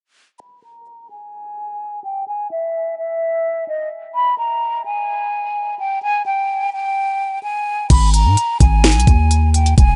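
A breathy, hollow concert flute carries a melancholic melody through a filter sweep and digital delay from 0.4 seconds, before a deep, sine-toned 808 bass and an electronic trap kit with a knocking kick, sharp snare, crisp hats and crash arrive at 7.9 seconds to push this dark, half-time hip hop fragment into a dry, up-front second section.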